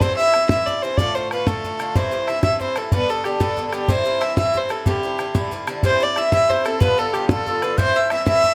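Lively and cheerful, this Celtic jig in 6/8 has a straight feel and is cut from a longer piece. A single fiddle carries the melody up front, close and airy, with a gut-string tone and a touch of plate reverb on its bowed line. Beneath it, the Irish bouzouki picks a metallic, double-strung accompaniment. The bodhran sits close and dry with a damped, tight sound. At 5.8 s a pure, reedy wooden flute joins in the background with a second line, its crisp attack and vibrato adding a bright edge. The harmony circles around C with brief turns through Dm, G and G7, and the ensemble sounds as if it is in a small, wet room.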